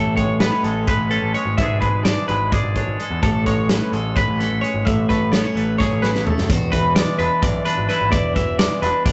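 A rough rehearsal-room recording with tube saturation, a dull top end and a moderate stone-room reverb captures this playful, intricate math rock and midwest emo excerpt in A major at 256 BPM in 7/8, where an up-front, scooped twangy electric guitar with tremolo carries the accompaniment, a bright, clean twelve-string electric guitar picks arpeggios, a growling overdriven picked bass anchors the low end, and a loose indie drum kit with a punchy kick enters at 0.2 seconds and plays a fill from 5.8 to 6.5 seconds as the harmony shifts from Amaj7 and E7/G# to E7.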